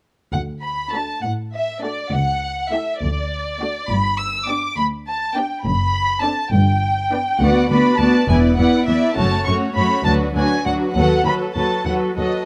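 Quick classical-period string orchestra music in D major and 6/8 at 68 BPM, cheerful and graceful, cut from a longer piece, where muted chamber violins carry the veiled, up-front melody from 0.3 s over dark, muted cellos and soft-attacked double basses, while a lush muted studio violin section adds a second line and close, symphonic muted violas fill in the accompaniment from 0.9 s, all of them bowed with vibrato and caught by detailed microphones in light reverb as the harmony moves from D through G and F#m to a closing B7/D#.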